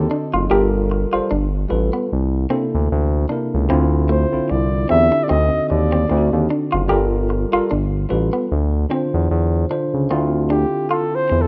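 Lightly reverberant and rough like a home demo, this sultry, late-night R&B excerpt in D minor moves at 75 BPM with a gentle sixteenth-note swing over chords such as Gm9, C13 and D7b9. Up front, a smooth synth bass with saturated sawtooth and square-wave tones and vibrato anchors the groove, while a worn, slightly out-of-tune tine electric piano with light overdrive plays accompaniment. A slightly broken-up, lo-fi electric guitar adds a picked second line beneath a dark, breathy, close-miked flugelhorn melody that takes a jazz-style solo from 10.1 seconds.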